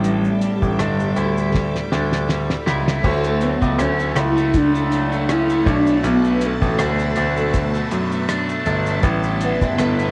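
A hazy cassette home recording with light reverb and small-room ambience carries this nostalgic, laid-back slice of indie bedroom pop at 80 BPM in D major, where a velvety, detuned sawtooth synth lead with tape echo and vibrato sings the melody over glossy pulse-width synth keys, a bright, twangy guitar at the edge of break-up with warbly pitch drift, a swirling phased string machine in the background, a clear, polished concert grand piano holding down the deep bass, and a cloth-damped, thuddy drum kit with dark cymbals and a fat snare that plays a fill from 1.5 to 3.0 seconds before the chords move from A7sus4 to Dmaj7.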